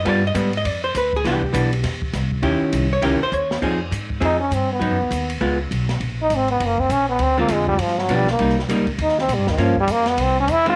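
A clean, picked hollow-body electric guitar and a woody pizzicato upright bass with a touch of tube saturation open this cool, swinging small-group jazz excerpt at 201 BPM in 4/4, with the guitar sitting up front over chords such as G7b9 and Cmaj9. An acoustic drum kit in a small room joins them, its smooth sound marked by dusky cymbals, a medium-tuned snare and a boomy kick. A drum fill at 3.3 seconds leads into the move to F minor. At 4.3 seconds a clear, vintage-toned trombone enters up front and takes a solo in jazz style over a progression that includes Fm7, Abm7, Db7 and Dm7b5. Light reverb gives the group a sense of space, and the eighth notes swing steadily throughout.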